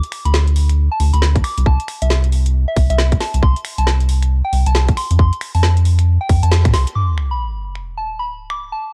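A moody, skippy two-step UK garage excerpt at 136 BPM, swung on the sixteenths, with a soft, pure FM synth bell carrying the melody through a chorus effect while a garage kit of finger snaps, metallic hats and a woody snare ticks along. A rubbery, nasal square bass sits dark and up front from 0.3 s, joined at 1.4 s by a tight, layered electronic kick, before a band accent at 6.5 s and an up-front sub drop that lands at 7.0 s. The whole thing has a dry, gritty hardware character with a cassette tape feel and a digital ambience.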